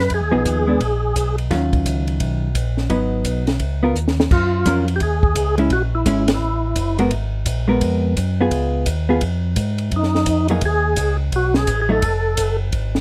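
A brisk swung 4/4 at 171 BPM drives this soulful, late-night soul jazz organ trio excerpt, its eighth notes carrying a moderate swing. A round, mellow tonewheel organ holds down the bass from the first second to the last, lightly overdriven and colored by chorus vibrato and a slow rotary speaker. Above it, a fat percussive tonewheel organ states the melody in short bursts between Eb4 and B4, entering at 0.0, 4.3 and 10.0 seconds, with audible key click, second-harmonic percussion and the same slow rotary churn. A dark, clean hollow-body electric guitar supplies compressed, picked accompaniment, while a dry, compact cocktail kit with a high-tuned snare, punchy kick and dusky cymbals keeps time and throws in a short fill just before the second section begins at 4.3 seconds. The harmony moves through rich minor and extended chords such as Ebm9, Db13 and Gbmaj7, and a band accent at 6.2 seconds punctuates the groove inside a dark production with light reverb.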